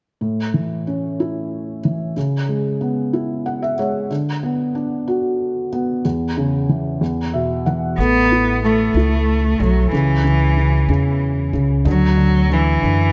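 This short cut from a longer pop piece sits in a small room with light reverb, giving it a close, intimate feel. A felt-muted upright piano carries the accompaniment from the start, soft and mellow with its action noise audible, and adds gentle fills around 3.1 and 7.0 seconds. At 8.0 seconds a single bowed cello takes up the melody, smooth and even with vibrato, its tone treated with delay and carrying a distant quality. A pizzicato upright bass with steel strings enters at the same moment, giving a woody low line beneath. In 6/8, the chords move from A through C#m7 and Bm/D to a closing Dadd9, giving the passage a heartfelt, tender mood.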